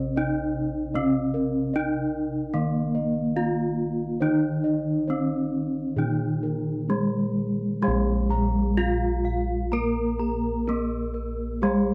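A bright, ringing bronze metallophone carries the melody of this short Javanese gamelan excerpt, struck with a horn mallet and heard close and up front, its paired tuning producing shimmering beats. Set in slendro on Bb at a calm 63-77 BPM in straight 4/4, the music feels serene and shimmering. Beneath it, a second metallophone played with padded disc mallets supplies a mellow, soft, airy accompaniment, while bossed gongs spin out round, beating arpeggios up front. Another set of bossed gongs, sounded with padded beaters, gives a full, dry bass foundation. At 7.8 seconds the piece moves into a new section as a third metallophone, struck with a wooden mallet, joins with its own arpeggios. The sound has little reverb, like a close 1970s studio recording, and the passage is cut from a longer piece.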